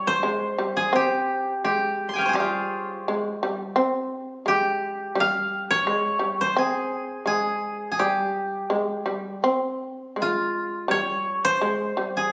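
A bright, woody koto played with fingerpicks carries a dry, up-front melody over a mellow yet powerful plectrum-plucked shamisen whose percussive, buzzing, fretless second line sits low beneath it, in a calm, austere Japanese traditional passage in C miyako bushi at a loose, rubato 85 BPM in 4/4, cut from a longer piece and captured on a phone in a moderate recital hall with club-like reverb, compression and a dulled top end.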